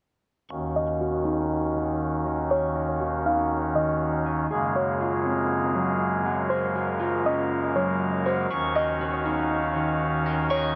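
Bathed in a huge ambient reverb, this hazy, melancholic half-time hip hop excerpt pairs up-front, low-pass filtered pipe organ chords in a soft reed voice with slightly broken-up, twangy electric guitar arpeggios carrying digital delay, while a dark, round synth pluck with chorus and delay sings a melody from 0.8 s, as a filter sweep runs through the Ebm7 to Gbmaj9#11 changes.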